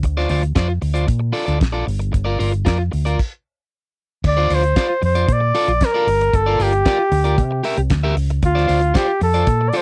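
A clear flugelhorn with vibrato and scooped notes carries the melody from 4.3 seconds, its slapback echo riding over a driving, sultry disco groove at 114 BPM in D minor, cut from a longer piece. Beneath it, a dark, round hollow-body bass sits up front, a damped 1970s kit offers a fat snare and tight kick with a rolled-off top, and a picked electric guitar at the edge of break-up comps through Dm7, Bbmaj7 and Gm7 changes. The band halts for a stop from 3.2 to 4.2 seconds before the horn enters, all captured in a dry, close 1970s-style studio sound.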